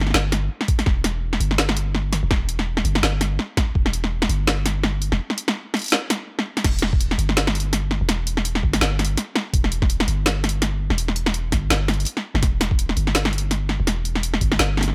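Half-time drum and bass with a tense, cinematic mood, cut from a longer piece and set in a dry space. A deep, mellow 808-style bass holds long sine tones with a fast attack that decay beneath an overdriven, up-front electronic kit of woody snare, bright hats and crash cymbal, swung on the sixteenths. A gritty, pitched-down sampler kick thumps from 0.7 seconds, drops out at 3.8 seconds ahead of a break from 5.2 seconds, and returns at 6.6 seconds as the drop repeats.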